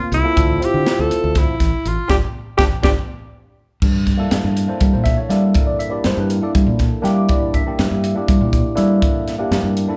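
Funky and slick, this electric jazz fusion excerpt in G dorian moves at 242 BPM in a straight 7/8, with a clear, up-front alto saxophone soloing with light vibrato, subtone and scooped notes until 2.9 s, a clean tine electric piano through a combo amp and a phaser, a direct fingered electric bass, and a crisp, airy fusion kit with dark cymbals, a high-tuned snare and a punchy kick; a band accent and a drum fill lead into a second section at 3.8 s, all in a live room with light reverb.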